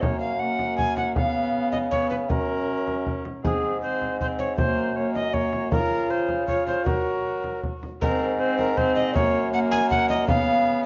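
Courtly and festive, this brief renaissance-style consort dance in triple time places an airy, chiffy alto recorder up front over a reedy, gut-strung viola second line, a vintage-toned bassoon bass with light vibrato and a close, soft-handed frame drum, all four playing throughout, heard through a moderate recital hall reverb and worn, warbling cassette tape that dulls the highs.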